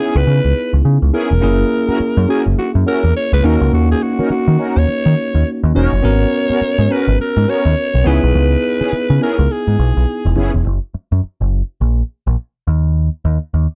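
A swung sixteenth-note groove at 104 BPM in 4/4 drives this punchy, bouncy R&B excerpt, cut from a longer piece and moving through C#m7, F#7, D#m7 and G#m11 before settling on F# at 10.6 seconds. A raspy, gritty alto saxophone carries the melody with vibrato and scooped notes, close-miked and given a slapback echo. Beneath it, a bell-like tine electric piano chimes clean accompaniment, while mellow synth brass adds detuned sawtooth stabs with a filter sweep, chorus and phaser. A deep dub picked electric bass, round and up front, sits louder than the other parts and carries on alone after the saxophone, brass and piano drop out between 10.4 and 10.7 seconds, running to 13.7 seconds. The sound is dry and close, like a 1970s studio recording.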